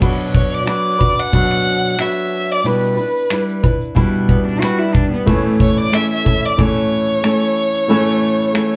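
A gently swung sixteenth-note groove in 4/4 comes from a loose acoustic indie kit of punchy kick, finger snaps, shaker and crash, sitting up front in a small pumping room, while a fingerpicked flamenco guitar with fresh strings moves through Bm, G6/B and A in this heartfelt, easy-going acoustic pop fragment. From 0.4 s an expressive bowed violin carries the melody with vibrato, soft attacks and portamento, bathed in plate reverb. A nasal, boxy cello adds a brief second line at 4.3 s, and from 5.3 s a mellow felt-muted upright piano with audible action noise sits in the background, the whole group heard from further back in a wet studio room.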